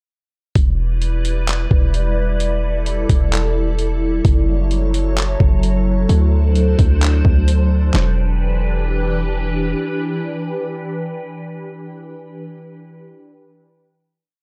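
Ethereal and melancholic, this short atmospheric cloud-rap piece in E minor moves at 130 BPM with a half-time feel in 4/4. A pitched-down, sampler-style boom bap kit plays a sparse half-time beat from 0.6 seconds, its thumpy kick, medium-tuned snare, hi-hat and handclaps sounding compressed, gritty and tape-warm up front. Alongside it, a deep, boomy 808-style bass lays long sub-bass notes that follow the kick, with a fast attack, decaying sine tone and a noise layer. A glassy, warbling FM pad with a vintage character enters at 1.0 seconds, holding slow-attack chords through ensemble chorus, built-in reverb, phaser and sidechain pumping, moving from Em7 through F#m7 and D7. The drums drop out around 8.1 seconds and the bass at 9.7, leaving the pad to sustain a final Em7 chord until 12.4 seconds. The whole is captured as a dry, gritty hardware recording with transformer saturation in a digital ambience.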